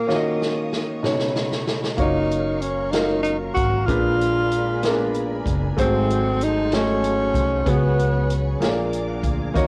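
A homey cassette recording in a snug booth carries this uplifting, reverent slow gospel excerpt in a straight 6/8 at 63 BPM, where an up-front tenor saxophone with vibrato and scooped notes sings the melody over polished grand piano with audible action noise, a distant, roomy drum kit that opens with a fill, dark bowed strings in the background, a woody pizzicato upright bass and a tonewheel organ with key click and slow rotary that both join at 2.0 seconds, the organ adding a fill at 8.6 seconds over chords moving from D#m9 through F#maj7 to A#7.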